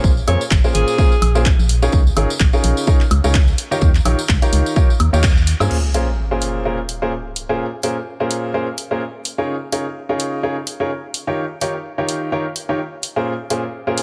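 Soulful and energetic, this piano house cut rides a swung 4/4 groove built on a clear, woody upright piano riff that runs the whole way through, pumping against the beat and trailed by tape echo. For the first 5.7 seconds a hollow, organ-like FM bass with a dark, decaying tone pumps underneath, while an up-front, tape-warm electronic kick drives the pulse until 5.3 seconds and a close tambourine adds a quiet shimmer. A bright alto saxophone slips in briefly with a soft-attack, subtone phrase carrying light vibrato and a gritty vintage sampler edge. An overdriven analog drum machine enters just after the start and supplies crash cymbal, handclaps, hi-hat and woodblock from then on. A band accent at 5.2 seconds gives way to an electronic sub drop that hits at 5.7 seconds as the bass and tambourine drop out. The chords cycle through Bbm9, Db69 and Eb9, and light reverb with digital ambience frames the mix, leaving the piano and drum machine to carry this fragment of a longer piece.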